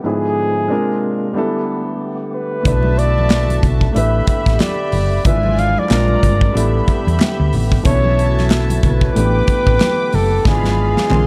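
A lightly swung 16th-note groove at 92 BPM in 4/4 carries this smooth, bittersweet slice of lush 1970s-style soul, where a smooth-topped flugelhorn sings the melody over an intimate concert grand piano, with audible action noise, and a fat, key-clicking tonewheel organ with slow rotary speaker and light overdrive sitting in the background. At 2.7 seconds the band fills in: a round, punchy hollow-body electric bass and a polished drum kit with tight kick and medium-tuned snare sit up front, while a floating, soft-attack string section adds a second line and very quiet congas join, followed by crisp group handclaps at 3.3 seconds. Chords such as E7b9/G#, A#9, A9sus4 and Bm7 cycle under a dark production with light small-room reverb, and a drum fill arrives at 10.5 seconds before the excerpt cuts off.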